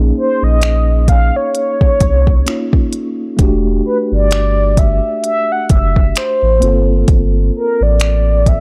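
This slow, longing contemporary R&B piece opens on a mellow tine electric piano, sounding clean as if through its own built-in speakers, over a deep, round sub bass that sits up front with fast-attacking, sustained notes. A horn-like synth lead carries the melody from 0.2 seconds, its detuned, wave-folded tone shaped by chorus, vibrato, a filter sweep and a soft attack. At 0.6 seconds an electronic, produced drum kit arrives up front with finger snaps, crisp hi-hats and a soft kick, the sixteenths lightly swung. The harmony moves through Bbm11, Em11 and Gm11, lending the sensual mood a dusky color. The production is dark and dry, with little reverb, keeping the bass, drums and lead close to the listener.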